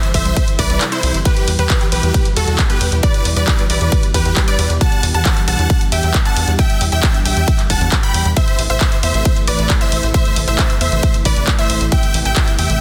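A straight 4/4 pulse at 135 BPM drives this uplifting, soaring trance passage, tuned to A4 = 436 Hz, where a punchy, up-front electronic kick (dropping out from 0.8 to 1.3 s as a very quiet swell passes) joins an analog drum machine of handclaps, hi-hat and ride cymbal re-recorded in a large room, a tight, driving sawtooth sequencer bass with a moving notch, a lush, thick pad with chorus, a detuned unison pluck with ring modulation set in the background, and a huge, euphoric supersaw lead carrying the melody with digital delay, while the lead, pluck, pad and bass pump with the sidechain over chords moving from C to Em to Am in a dense, heavily limited modern master.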